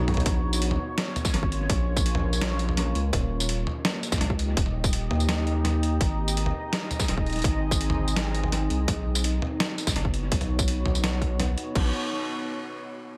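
A half-time drum and bass groove in 4/4, dark and spacious, opens on a drum fill as a gritty, pitched-down boom bap sampler-style kit with crash, hi-hat, medium-tuned snare, tambourine and toms, roomy and up front with analog delay, enters and is soon joined by a hard-clipped electronic kick, all over a thick, saturated sine sub bass carrying a filter sweep and beneath a moody, evolving detuned sawtooth pad that pumps with sidechain and shimmers with chorus through chords of Bbm, Eb, Ab and Badd9 in an echo-heavy mix with light reverb.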